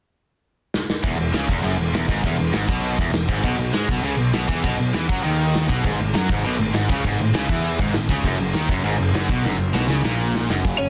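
A loose, acoustic indie drum kit sits up front, its small, pumping room giving dark cymbals, a medium-tuned snare and a tight kick a rowdy punch, and a fill at 0.7 seconds kicks off this energetic punk rock cut from a longer piece. At 1.0 seconds three overdriven guitars crash in with the riff: a biting one, a bright cranked stack tone sitting in the background, and a very quiet, double-tracked semi-hollow guitar adding hollow-body body beneath. A fuzzed, growly picked electric bass, heard direct and amped, anchors the low end as the chords move through E5, B5 and A5 before landing on F#. Another drum fill drives the close of the riff before an up-front lead guitar through a small cranked amp flashes in at 10.8 seconds. The mix is dry with little reverb and a dense, heavily limited modern master that keeps the straight 4/4 drive relentless.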